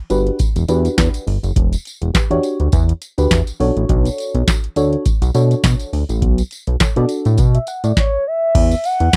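Early-eighties boogie funk in B minor at 103 BPM, this late-night, slick excerpt rides a 4/4 groove with a light swing on the sixteenths. A booming analog drum machine sits up front with a deep kick, crisp snare, metallic hats, handclaps and a crash, all dry and tape-tinged, while a close, jingly tambourine sits far back in the mix. Underneath, a chorused synth bass with a glossy, retro pulse-wave character and filter sweeps holds the low end from E1 to B2, matching the drums in prominence. A soft, round FM electric piano with a warbling chorus and a dark, decaying tone plays the Em9 and Bm9 chords from 0.1 to 8.1 seconds, quieter than the rhythm section. At 8.0 seconds a smooth, gliding portamento lead with vibrato enters in the upper register, shortly before the harmony moves to Esus2, all captured in a dry, close 1970s-style studio sound with little reverb.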